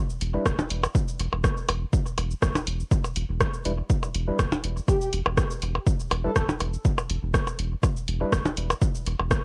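A steady pulse with a light swing on the sixteenths drives this sparse, clinical minimal techno excerpt. An overdriven electronic kick sits up front, while a punchy analog drum machine fills in hi-hat, rim click and shaker, and up-front percussion blips carry a tape-softened echo. Beneath them, a thick, saturated sub bass holds a low E with a fast attack and a sidechain pump. A hollow, nasal organ stab appears with a brief hit near the start, then returns from 3.7 seconds with dark, chorused, decaying stabs colored by a moving notch and an analog delay. Between 4.9 and 6.4 seconds, a breathy, flute-like synth lead floats in softly with tremolo, vibrato and ensemble chorus. The whole track is dry and has the grainy character of a home cassette recording, with lossy compression artefacts.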